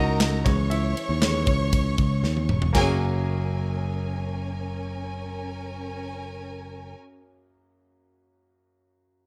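This hopeful, anthemic piano-driven pop excerpt sets a clear, polished concert grand piano over a growly, up-front picked electric bass and a lush, bowed violin section with soft attack and expressive vibrato, moving from C#m to F#add9. A mid-forward studio drum kit with tight kick, snare, toms, ride and handclaps plays from 0.2 to 2.9 seconds, including a fill just before the harmony changes. The strings and bass stop at 6.9 seconds, leaving the piano to play on to 9.3 seconds in a rough home-demo mix with studio reverb.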